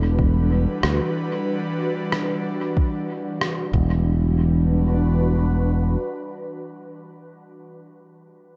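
A growly, punchy fingered electric bass sits up front in this spacious, deep ambient dub fragment, its bright, direct tone thickened by tube saturation. Alongside it, an airy, breathy pad, also up front, holds sustained chords that settle on an E minor ninth, dip briefly to plain E minor and return. The pad has a slow attack and long release, with a mellow blend of triangle and detuned sawtooth, a noise layer, a moving notch and a soft chorus. A soft electronic kick gives the groove its pulse in a lightly swung 4/4, and drops out at 3.9 seconds. A muffled, pitched-down rim click adds accents, its sampler-style hit compressed, re-recorded in a large room and trailed by dub echo. Light reverb adds to the roomy feel, and the bass stops at 6.0 seconds, leaving the pad to carry on alone.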